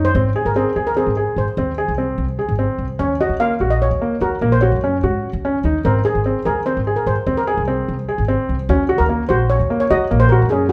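A moderate recital hall reverb, with a 1.4-second decay, surrounds this short contemporary instrumental cut from a longer piece, giving it a pensive yet restless air. Set in Eb dorian at 148 BPM in a straight 7/4, the music moves between Ab and Ebm7 chords throughout its 10.7 seconds. A steel pan carries the melody, its shimmering, metallic tone softened by rubber sticks into something dark and smooth. Beneath it, a felt-muted upright piano sits up front with intimate, thin-felt arpeggios that sound gentle and mellow. An acoustic upright bass with steel strings anchors the low end, played pizzicato with a woody, warm character and also placed close to the listener. All three parts play together from start to finish, blending into a hushed, searching texture.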